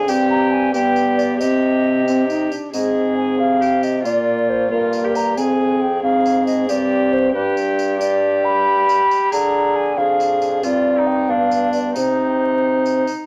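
An airy wooden baroque flute with a straight tone and crisp attack carries the melody of this solemn, rustic renaissance-style consort dance in a straight 6/8. Beneath it a close, nasal gut-string viola adds a reedy second line, a mellow trombone with light vibrato fills in the accompaniment, and a clear bassoon anchors the bass, while a jingly, bright tambourine sits close in the mix from 0.1 seconds. The harmony leans on suspended chords that settle into their resolutions, and a moderate stone-room reverb and vinyl crackle give this short cut from a longer piece an aged, resonant character.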